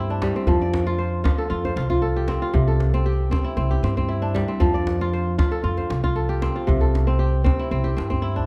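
Warm and flowing, this brief cut of West African traditional string music moves at 116 BPM in F major, with a crisp, ringing kora up front spinning fingerpicked arpeggios over F and C chords, woody pizzicato upright bass, and a deep djembe joining at 0.1 seconds, all set in a dark production with moderate recital-hall reverb.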